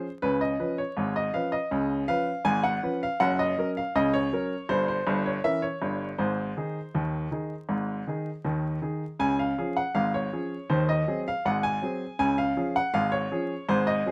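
Lively and jaunty, this short ragtime passage in 2/4 with a straight feel features a solo upright piano with a brilliant, woody tone, audible action noise and short sustain, captured up close in an intimate, detailed recording with light reverb and vinyl crackle, moving through chords such as Db7, Gb, Gdim7 and Ab before settling back on Db.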